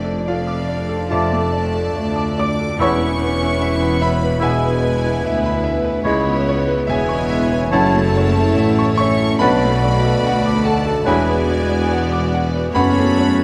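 A clear, up-front grand piano carries the lyrical, passionate melody of this romantic piano-and-orchestra passage at a rubato 72 BPM in 4/4, alongside a dark, softly bowed violin section over a background viola section, double bass section, very quiet cello section and mellow tuba, with a floating upper violin section and distant French horn chords joining at 0.3 s, and a pure flute group, close-miked clarinet, oboe and bassoon adding lines from 1.1 s, set in a concert hall's moderate reverb as the harmony moves from Dm/F through C#m7 and E9 to F#m.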